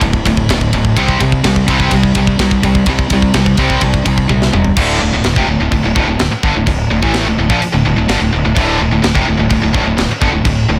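The tight metal drum kit sits up front with a high-tuned snare, a tight kick and a mid-forward, rolled-off top, driving crash, ride, kick, snare and toms through this aggressive, relentless heavy metal excerpt at 126 BPM in 4/4. Two tight distorted electric guitars play picked riffs in the background, both bright, spanning D2 to C4 and moving from D5 to C5 power chords before settling on D minor. Beneath them a fingered electric bass growls with overdriven fuzz, its direct and amped tone reaching down to D1. A drum fill at 4.3 seconds leads into a new section at 4.8 seconds, and the drums stop at 10.6 seconds while guitars and bass carry on to the end. Light reverb and a dense, heavily limited modern master keep the sound compact and pressing.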